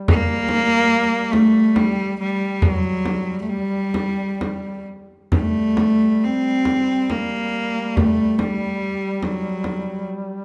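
Longing and solemn, this excerpt of a Caucasian folk lament in G harmonic minor drifts in a rubato 3/4 at about 64-73 BPM, as an up-front bowed cello with a biting, nasal tone, light vibrato and an airy bow carries the melody between F#3 and C4 over a soft, mellow duduk drone on G3 with its own folk-style vibrato and a warm, up-front frame drum, all set in a moderate recital hall reverb.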